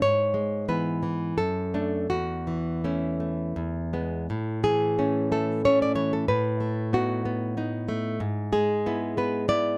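This romantic piece for solo classical guitar is a short excerpt from a longer work, nostalgic and warm in mood. It moves in 3/4 at a flexible rubato pace, drifting between 79 and 98 BPM in A major. A single nylon-string guitar carries everything, fingerpicked in a classical style and sitting up front, with a warm acoustic tone that spans from E2 up to D5. The passage states the same opening phrase twice, the second pass beginning at 4.3 seconds on an A chord after a first phrase that moves from E/G# through D/F# and A/E to E. The harmony then leans through B7/A and arrives on E7/G# at 8.2 seconds. A light reverb adds a soft sense of space around the guitar.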